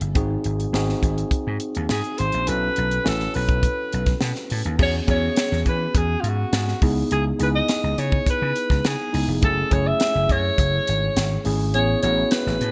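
A straight 4/4 groove at 104 BPM drives this glossy, upbeat slice of polished 1980s jazz-funk pop in E major, built on a tight funk drum kit with a high-tuned snare, hi-hat, crash and gated reverb, alongside a punchy, amped vintage slap bass sitting up front. A worn, slightly out-of-tune tine electric piano with subtle chorus supplies the harmony, moving through lush ninth chords such as C#m9 and Amaj9. From 1.9 seconds a breathy, whispered alto saxophone carries the jazz-style melody with light vibrato and a soft attack, intimate yet roomy, all within bright digital production and small-room ambience.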